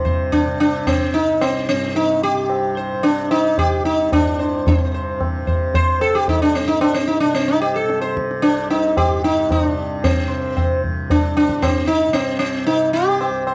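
A Hindustani classical piece moves at 112 BPM in a 5/4 metre with a straight feel, and the pace speeds up across this 13.5-second excerpt cut from a longer performance. The mood is introspective and meditative. Up front, a plectrum-plucked sitar carries the melody between C4 and C5, its round, buzzing tone ringing with sympathetic strings. Beneath it, a softly plucked tanpura holds a bright, shimmering drone from C2 to C3, sitting well back in the balance. The tabla enters at 0.1 seconds, high-tuned with a short ring and the sound of a small room. The recording is dry and close, with the feel of a 1970s studio.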